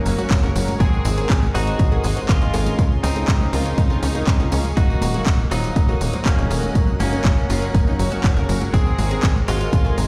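A straight 4/4 pulse at 121 BPM drives this emotional, expansive progressive house excerpt, where a punchy, overdriven electronic kick sits up front beside a tight, nasal sawtooth sequencer bass with sidechain pumping, while a house drum kit adds overdriven handclaps and bright hi-hats, a distant tambourine and very quiet, dry congas and cowbell fill out the percussion, and a twangy, clean electric guitar carries the melody through dub echo over a floating, sul tasto violin section, a shimmering, ethereal pad, dark piano stabs with delay and a very quiet, detuned unison pluck playing arpeggios, all moving through Gb, Abadd9, Db and Ebm in a stone room.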